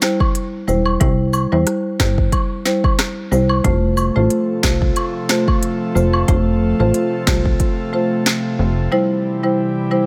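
Digital ambience surrounds this sunny, bouncy dancehall piece at 91 BPM in F major with a light swing, where a woody, up-front marimba with sidechain pumping, an electronic afro-pop drum kit with a deep kick, sharp snare and crisp hats, and acoustic cabasa and woodblock open together, a punchy, funky analog bass with a plucky filter snap joins at 0.7 seconds, and an airy, breathy pad with chorus and its own pumping arrives at 3.9 seconds, shortly after the harmony moves from C to F.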